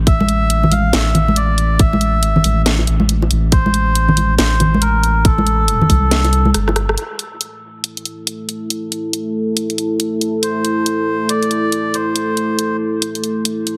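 A reedy, breathy melodica with dub echo carries the melody over a deep, round sub bass in this meditative, brooding deep dubstep excerpt in A minor at 139 BPM, with a half-time feel and swung 16ths. A tight electronic kick, a garage kit with a cracking snare, hi-hat and rim click, and bright, close congas and bongos drive the drop until a drum fill and break at 6.5 seconds. A dark, detuned analog pad with chorus then enters at 8.1 seconds, the melodica returns at 10.4 seconds, and moderate spring reverb and heavy compression give the whole a radio-like sound.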